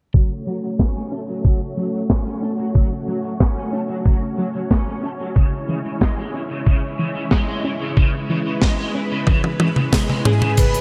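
Synthwave at 92 BPM in 4/4, dreamy and nostalgic, cut from a longer piece and moving from F#m to C#m at 5.4 seconds. A lush, vintage string machine holds sustained sawtooth chords with a sub octave and slow attack, thickened by ensemble chorus and pumping against the kick, while a soft, round pluck sits dark in the background playing arpeggios through chorus and delay. A bright, overdriven electric guitar picks a crunchy riff and sits lower in the mix, treated with ensemble chorus, a low-pass filter, delay and slapback echo. Filter sweeps shape the strings, the arpeggio and the guitar through almost the whole passage. Up front, a thumpy, tape-kissed electronic kick drives from the start, joined at 0.8 seconds by a dry, polished acoustic kit with a high-tuned snare, hi-hat, crash and toms that plays a fill from 9.3 seconds. A smooth, detuned supersaw melody with a cassette-tape character enters only at 10.3 seconds, all of it set in a lush hall reverb with a big arena sound.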